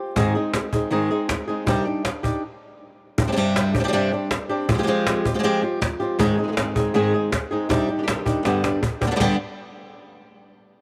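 Flamenco in a mournful, intense mood, cut from a longer piece. An up-front, fingerpicked acoustic flamenco guitar with fresh strings carries the melody, while a darker, thumb-plucked second guitar adds stabs in the background and a snappy, compressed and saturated cajon with snares drives close up. The band halts for a stop at 2.4 seconds before resuming at 3.2 seconds, and a cajon fill from 8.4 seconds leads into the next section, all set in light reverb.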